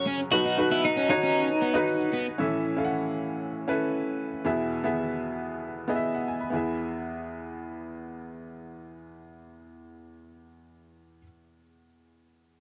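A straight 4/4 pulse at 116 BPM drives this short, anthemic piece of piano-led pop in E major, cut from a longer recording and moving through the chords B, A and E. An upright piano carries the accompaniment from start to finish at 12.6 seconds, sitting up front with a woody, slightly detuned character and audible action noise that makes it feel intimate. At the opening, a twangy, compressed twelve-string electric guitar plays a clean, picked melody colored by tremolo and a cassette-tape effect, stopping by 2.1 seconds. Alongside it, a crunchy overdriven guitar picks a short riff, and a grainy, close tube shaker adds percussion until 2.4 seconds, after which the piano carries on alone. The whole thing has the feel of a warm home recording on cassette, with light reverb.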